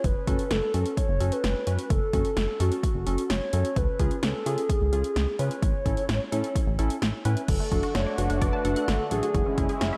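Soaked in a lush hall reverb, this dreamy, driving synth-pop fragment opens with a hollow, woody clarinet-like synth lead carrying the melody through chorus and tape echo over a glossy, nasal chorused bass and a dry, overdriven analog drum machine with a punchy kick and snare up front. Round, mellow analog keys add chorused accompaniment just after the start. At 7.5 seconds a thick, bright unison pad enters with sustained chords while a detuned pluck sits in the background with tape-echoed arpeggios, giving the cool minor-key progression a fuller lift.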